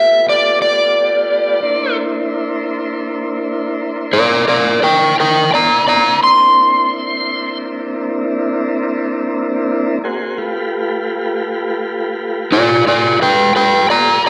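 Gritty and soulful, this 12/8 blues excerpt puts an overdriven, fingered electric slide guitar up front, carrying a solo melody across its full 14.3 seconds. Alongside it, a smooth, clean tonewheel organ holds sustained chords through a slow rotary speaker, moving from G9 to C9 at 1.6 seconds and back to G9 at 10.0 seconds. A moderate recital-hall reverb gives the pair a resonant, church-like space.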